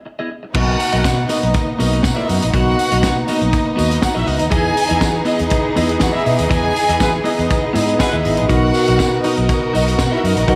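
A rich, smooth violin section carries the second line in this glamorous, joyful disco cut, its bowed vibrato touched by analog delay as it sings over a straight 121 BPM groove in B major. A dark, compressed clean electric guitar with lush chorus opens alone at 0.1 seconds. A biting, close string section on sustained chords then arrives with a vintage drum kit, whose punchy kick, high-tuned snare and dark cymbals sit in a studio room, and a round, amped fingered bass. A jingly tambourine hovers distant and very quiet, while the harmony moves between Emaj7 and Bmaj7. During a band accent, a clear, punchy horn section adds stabs in the background at 7.0 seconds, and a barky, lightly overdriven tine electric piano with phaser enters at 8.5 seconds. Light reverb and small room ambience keep the sound intimate, and the piece is cut from a longer performance.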